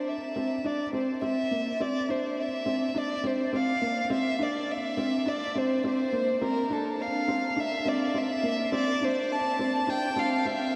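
A felt-muted upright piano and a dark, bowed solo violin begin together in this brief electronica fragment cut from a longer piece, with a luminous, tender mood. The piano plays an intimate riff with a boxy, mellow tone, audible action noise and subtle chorus. The violin carries the melody sul tasto with light vibrato, a soft attack and a smooth top; both sit up front, trailed by diffuse ambient delay, through a build-up soaked in huge, dreamy reverb, the violin lingering until 10.8 seconds.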